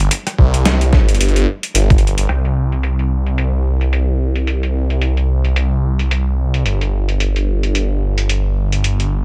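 This glitch hop excerpt rides a 110 BPM groove in 4/4 with a loose 16th-note swing, giving it a playful, funky bounce. A boom bap sampler-style drum kit runs from the start to 9.1 seconds, its hi-hat, rim click and medium-tuned snare pitched down, compressed and gritty, with a low-pass filter dulling the hats and snare. An electronic kick drum, thumpy and tape-warm, punches in only from 0.4 to 2.0 seconds before dropping out. Underneath, a phased, detuned saw bass holds the low end between G1 and C2, its thick, swirling tone saturated by tube drive and sitting up front with a fast attack and sustained notes. The whole piece sits in a digital ambience, and the opening stretch gives way to a new section at 2.3 seconds that carries on to the close.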